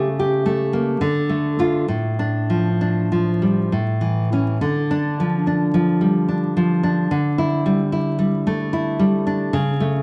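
This is a romantic piece for solo classical guitar in D minor, with a wistful, melancholic mood. It moves in a rubato 3/4 at roughly 64-76 BPM. A single fingerpicked nylon-string guitar plays throughout the 10 seconds, sitting up front with a full-bodied, deep tone that spans A2 to G4, and finger squeaks come through. The harmony opens on A7/C# before settling into Dm, passes through Dm/A and A, returns to Dm, and reaches a Dsus24 at 7.1 seconds. A generous recital hall reverb surrounds the instrument, and vinyl crackle gives the sound an aged patina; the passage is cut from a longer piece.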